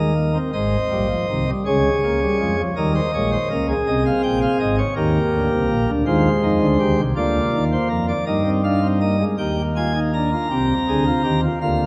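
A contemplative, serious baroque-style four-part fugue for solo pipe organ in Ab major, unfolding at 54 BPM in a straight 6/8 as light, sparkling flute stops with a bright, romantic voicing sit up front across a span from Ab1 to Bb5, carried into a wet church reverb with a 2.9-second tail, before the music shifts to a new section at 9.4 seconds and this brief cut from a longer piece ends on Ab/C.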